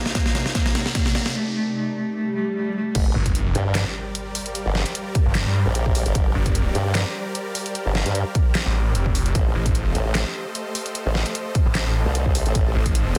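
Cut from a longer heavy wobble dubstep track, this aggressive, menacing piece opens with a rich, bowed cello melody with vibrato and tape echo over lush supersaw chords and a cloudy granular pad in the background, joined by a dubstep drum kit with a deep snare and a punchy electronic kick, while an electronic riser and swell build toward an impact at 3.0 s, where the half-time drop brings in an up-front, wobbling formant-sweep wobble bass with chorus and overdrive alongside a growling, distorted saw bass, all set in a dense, heavily limited modern master.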